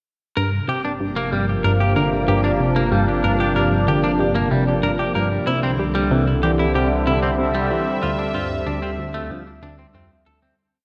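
A straight four-beat pulse carries this short, complete piece of ambient, sequencer-driven space music, its mood mysterious and hypnotic. A tight sequenced synth of detuned sawtooth and pulse waves drives a mellow, plucked six-step loop that drifts against the bar. Over it, a clean, picked semi-hollow electric guitar plays a ten-step arpeggiated loop that also drifts, sitting up front with delay and shimmer reverb. An airy, resonant pad with a noise layer swells in on a slow filter swell and holds bright, slowly shifting chords moving from Gm to C to Dm7. Beneath, a round, deep analog bass sustains the roots. The whole track sits in a concert-hall reverb with a worn, warbling cassette-tape pitch drift, and it fades out from 7.2 s to its close at 10.6 s.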